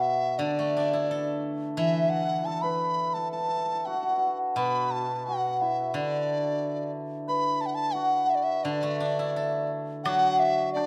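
From the first moment, a large dizi carries the melody in a graceful, festive piece of Chinese traditional chamber music, set in 2/4 with a free, rubato feel. Its hollow, mellow bamboo tone has a buzzing membrane, gentle vibrato and crisp attacks, and it sits up front with softened highs. Beneath it, a hammered dulcimer plays a second line, also up front, its shimmering, ringing strokes adding warmth. A steel-string zither plucked with fingerpicks supplies bright, silvery accompaniment, a little quieter in the blend. Only at 10.1 seconds does a very quiet woodblock enter, close and dry against the moderate concert-hall reverb that gives the detailed, closely recorded ensemble its sense of space. The recording is a short section taken from a longer piece.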